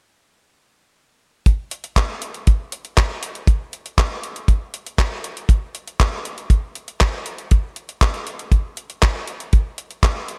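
Melodramatic and bittersweet, this straight 119 BPM italo disco excerpt in 4/4 pairs a dry, airy, tight acoustic kick drum played up front from 1.5 to 10.1 seconds with a detuned 8-bit digital drum machine of handclaps and hi-hat, tape-warm and sampler-style as if re-recorded in a small room, which runs until 10.4 seconds under light reverb.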